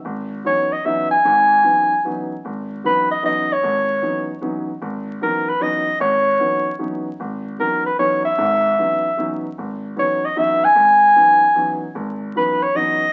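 A swung jazz waltz at 151 BPM in C# minor, this hypnotic, cool fragment cut from a longer piece sets a breathy, mellow soprano saxophone up front with a subtone solo melody over a smooth, vintage grand piano accompaniment of short sustain, opening on a C#m11 chord, all heard in a large studio reverb through the crackle and dulled top of a very old 78 rpm record.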